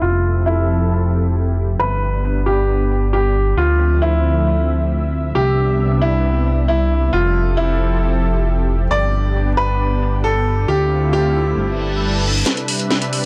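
Euphoric and soaring, this uplifting trance excerpt at 135 BPM in C major rides a lush, warbling, detuned unison pad under a filter sweep, with a fat, saturated sawtooth bass and a clear, boxy grand piano line that trails dub echo over a cycling Fmaj7–G–Dm7–Cmaj7 progression, until a reverse cymbal and riser arrive at 11.8 seconds and a techno drum kit with a cracking snare and metallic hats bursts into a short fill at 12.5 seconds, all framed by a dark production with light digital reverb.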